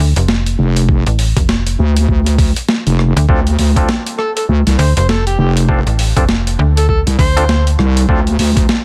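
Gritty and swaggering, this glitch hop excerpt struts at 100 BPM in D minor with a swung 16th-note feel over a single Dm7 chord, as a snappy, metallic slap-like FM bass and a heavy, chorused wobble bass sit up front beneath a thumpy, pitched-down electronic kick and a compressed boom bap kit with hi-hat, rim click and high-tuned snare, while an overdriven clav enters around 3.3 seconds with pumping, dub-echoed stabs and an amplified, overdriven harmonica takes a jazz-style solo from 4.2 seconds with light vibrato, tongue slaps and scooped notes, all in a dense, heavily limited, dry mix dusted with vinyl crackle.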